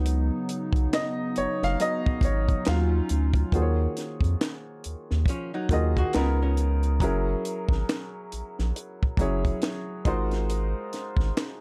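An intimate grand piano with audible action noise and plate reverb leads the opening 3.5 seconds of this smooth, late-night neo-soul R&B piece in Eb minor at 69 BPM with a swung 16th feel, over a round, deep, wave-folded analog bass up front, a dry compact cocktail kit with punchy kick, high-tuned snare, hi-hat and handclaps, and a hollow, flute-like pad with chorus that holds sustained chords until 3.5 seconds, while a clean, dark hollow-body archtop guitar adds a brief second line from 5.3 to 7.0 seconds, all within a dark, warm production over jazzy chords such as Ebm11, Db13 and Ab13.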